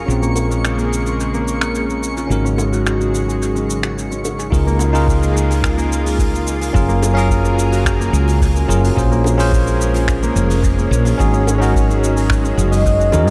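Sunset chillout with a warm, smooth mood, built on a bell-like tine electric piano with analog delay, a lush detuned unison pad with chorus, and a round, woody fretless bass sitting up front, while a twinkling granular shimmer glints in the background until 4.5 s, when an overdriven, deep electronic kick enters beneath a soft brush kit of cabasa, finger snaps and hi-hat with dub echo, thumb-plucked concert harp arpeggios and very quiet, high-tuned bongos, all set in an echo-heavy mix cut from a longer piece.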